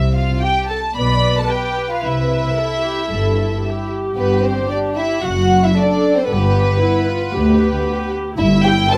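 A quick classical-period movement for string orchestra, this brief passage cut from a longer piece feels lively and spirited at 113 BPM in 4/4, though the pulse bends with a rubato give. The first violins carry the melody up front with light vibrato and a sul tasto touch, while a second violin line sits beneath them, and the violas join at 1.0 seconds with a dark, soft-attacked accompaniment. The cellos supply a dusky bass with light vibrato, doubled below by double basses whose soft attack gives them a pure, floating quality. Every section is bowed sul tasto, lending the ensemble an intimate, hushed glow even at this brisk pace. The harmony moves from Csus4 through G9/B and C to Gadd11, D9/F#, G and a rootless C/G near the close. Close, detailed microphones and light reverb keep the studio sound clear and immediate.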